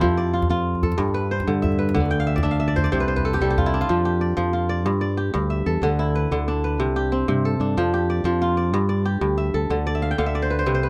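A light reverb surrounds this short cut from a longer piece of West African string and xylophone music, a hypnotic, warm groove at 124 BPM in 12/8 with a straight feel. Up front, a ringing, crisp kora fingerpicks arpeggios throughout, adding fills from 2.1 to 3.9 seconds and again near the close, while a bright, direct fingered electric bass holds the low end. A soft-handed, close and dry djembe sits in the background until 3.9 seconds, when the opening section gives way to the next and the harmony keeps cycling around F, G, D and C.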